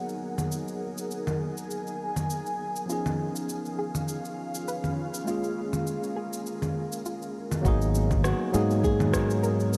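A dreamy, reverb-soaked haze opens this wistful, relaxed sunset chillout cut, taken from a longer piece and moving at 101 BPM with a 16th-note swing in G# dorian, where a clean tine electric piano with sampler grit and delay and an ethereal, airy pad, chorused, phased and carrying its own filter sweep, float over tape-warm electronic cabasa, congas and rim click placed up front. A soft, round pluck adds very quiet arpeggios from 2.9 seconds as the chords drift from G#m9 through C#7 and A#m7. At 7.6 seconds the pad falls away and a soft electronic kick enters. At 7.7 seconds the harmony returns to G#m9, as a thumb-plucked nylon-string guitar takes a delayed melody over a dark, round fingered electric bass and the kick.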